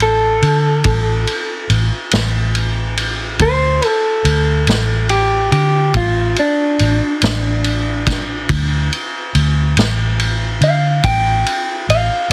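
Heavily compressed, dry and radio-like, this brooding, soulful slow blues in 12/8 is cut from a longer piece. An electric guitar through a small old amp solos up front for the full 12.3 seconds, its picked, lo-fi tone slightly broken-up, while a vintage foam-muted fingered electric bass supplies a dark, round, amped low end. A vintage acoustic drum kit with a tight kick, medium-tuned snare and dark ride cymbal sits mid-forward with a rolled-off top.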